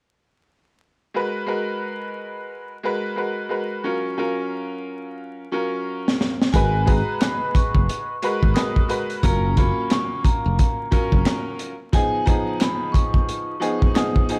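Studio reverb and vinyl crackle frame this moody, tough boom-bap hip-hop excerpt, which swings in 4/4 as a bright, woody, slightly detuned upright piano opens alone at 1.1 s, filtered and worn, cycling through minor-ninth and major-seventh chords. A crunchy breakbeat kit arrives at 6.1 s, gritty and saturated with a punchy kick, high-tuned snare, rim click and hi-hat, while a growly fretless electric bass steeped in lush chorus sustains low notes until 11.2 s. Above them, a metallic, ringing vibraphone, close-miked with its motor off, sings a high, tape-echoed melody, and a very quiet finger snap adds small-room texture.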